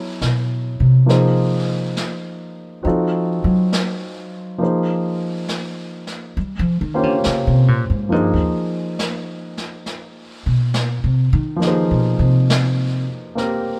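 A woody, thumpy upright bass on gut strings takes the pizzicato solo up front in this tender, late-night jazz ballad excerpt in Ab major at a slow, swung 68 BPM, backed by natural-sounding baby grand piano chords and a distant, roomy brushed snare with a rolled-off top, all set in light reverb.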